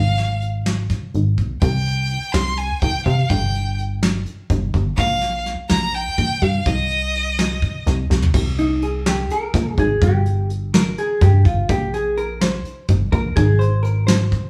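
Recorded live in a small stone room with moderate reverb, this tense, intricate progressive instrumental in 7/8 opens with a clear, focused violin carrying the melody with vibrato over a punchy, plucky analog bass with ring modulation and a soft brushed drum kit with dark cymbals, until a drum fill at 8.1 seconds hands over to a dark, clean hollow-body jazz guitar solo from 8.3 seconds.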